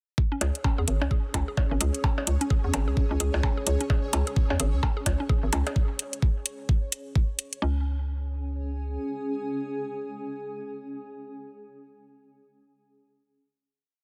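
A four-on-the-floor knocking kick and a pulsing gated texture holding a high C#5 open this cool, clinical minimal techno piece at 129 BPM, quickly joined by metallic closed hats, clicking cowbell and woodblock blips in cross rhythm, and a hollow, bouncy FM bass rolling through a staccato groove. A woody, round mallet-like pluck repeats a 3-step loop that drifts against the bar, carried by chorus and dub echo, while a cloudy, blurred granular pad fades in at 1.3 s with slowly shifting chords, its sidechain pumping shared by the pluck, bass and gated texture. The drums, pluck and gated texture drop away by 7.8 s and the bass follows by 9.0 s, leaving the pad's final chord to ring until 11.4 s within a dense, heavily limited master.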